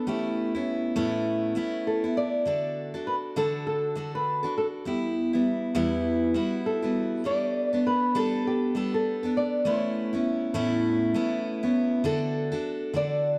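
Pop with a carefree, sunny mood, this short cut from a longer piece moves at 100 BPM in 4/4 with a light 16th-note swing in D major. A fingerpicked flamenco guitar carries the melody in a compact upper-middle range, its tone warm. Beneath it, a picked jumbo steel-string acoustic guitar supplies bright, full-bodied accompaniment that sits up front and spans from deep bass notes into the upper register. The harmony cycles through Aadd9, D, Emadd9 and Gadd9, returning to Aadd9 before a new section opens on D at 12.0 seconds. A moderate plate reverb with a 2.4-second tail adds space, and the overall production leans dark.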